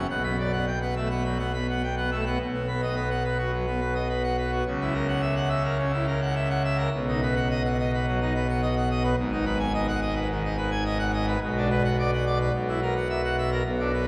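A full pipe organ, its mixtures drawn, opens alone on a B minor chord and drives this stormy, dramatic classical organ toccata at 106 BPM in 4/4 in B major, its majestic, brilliant, romantically voiced sound spanning G#1 to B5, heard from further back in a cathedral whose wet 5.0-second reverb surrounds the 14-second passage cut from a longer piece.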